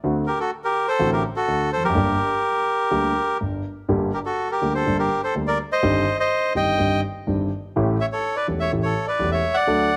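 Close, detailed microphones and light reverb frame this dramatic, melancholic tango fragment in G harmonic minor at 124 BPM with a rubato feel, where a concert grand piano with deep bass and short sustain plays the accompaniment through D7, Gm, Cm/G and A7, and a reedy, bright, airy bandoneon enters at 0.3 seconds to carry the melody, both instruments sitting up front.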